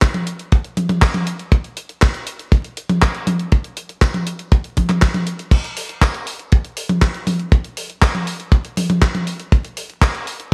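Bright 1980s-style digital production with a light studio reverb and a layer of vinyl crackle frames this short, nostalgic and melodramatic italo disco cut in a straight 4/4. A tape-warm, sampler-style 12-bit drum machine sits up front with crash cymbal, handclaps, hi-hat and toms bathed in gated reverb. Alongside it, and louder, a dry, tight, mid-forward acoustic kick drum punches through up front until 10.1 seconds, while the drum machine carries on to 10.5 seconds.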